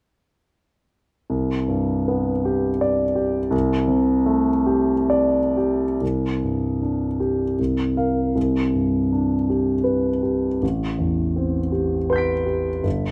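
The rhythm moves in a flexible, rubato three-four, drifting between 62 and 85 BPM, giving this impressionist classical solo piano excerpt a luminous, hazy mood in C major. A concert grand carries everything alone from 1.3 s, reaching from a deep G1 in the bass up to a high D7. Its sound is intimate and up front, with long sustain and the action noise of the instrument audible beneath the polished tone. A moderate stone room reverb lends the notes a gentle halo that suits the hazy character. The opening idea rests on a Csus2 colour, and at 6.0 s a second passage begins, touching Bb5/C before returning to Csus2 and settling on an Am11 as the piano holds through to 13.1 s.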